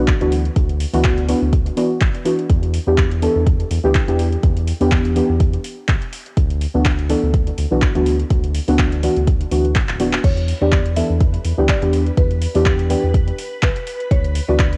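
A swung 124 BPM deep house groove in E dorian rides on an up-front, tape-warm electronic kick, with the kit's metallic hi-hats, handclaps and crash, and a round, dark analog bass that pumps under the sidechain. Detuned, warbling chord stabs with chorus and tape echo sway between D69 and Em7, giving this late-night, cassette-recorded fragment a hypnotic, vintage haze. After a drum fill at 9.9 seconds, a woody, buzzing marimba melody with tape echo enters at 10.2 seconds, and a silky string machine joins softly in the background at 10.6 seconds.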